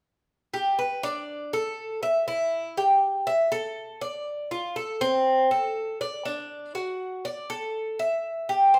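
A bright, metallic Cuban tres plays up front from 0.5 seconds, its picked double strings, some doubled at the octave, ringing between C4 and E5 over a relaxed, danceable Latin groove at 121 BPM in straight 4/4, with the live-in-one-room sound opened up by a moderate large-studio reverb in this brief passage cut from a longer piece.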